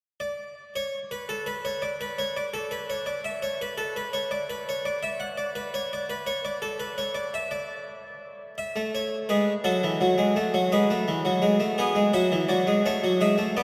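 A baroque-style two-part invention for solo harpsichord, this short classical piece moves at a stately yet lively 56 beats per minute in a flowing 12/8, tuned slightly below modern pitch at A4 = 437 Hz. The harpsichord is the only voice, entering at 0.2 seconds and playing until 13.6 seconds across a range from E3 to F#5. Its Flemish-style tone is airy and brilliant, with a plucked attack and the added shimmer of octave strings, and it sits up front in the sound. Around it, a cathedral's reverb gives a vast, echoing space with a long tail of 5.7 seconds. The harmony settles onto A at 8.6 seconds, passes through E7, and returns to A near the close of this passage, which is cut from a longer work.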